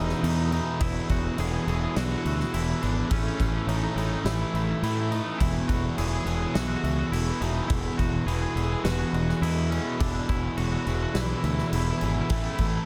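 A growling, overdriven fingered bass drives this euphoric, soaring post-rock passage at 104 BPM in E major, alongside a cranked stack guitar's bright overdriven riff, a big rock drum kit with bright cymbals and a punchy kick, a twangy, clean guitar melody bathed in lush chorus and diffuse ambient delay, a softly shimmering, detuned pulse-width pad holding chords, and faint lo-fi arpeggios from a slightly broken-up guitar through a small old amp, all moving through Emaj7, E7 and A in a light room reverb.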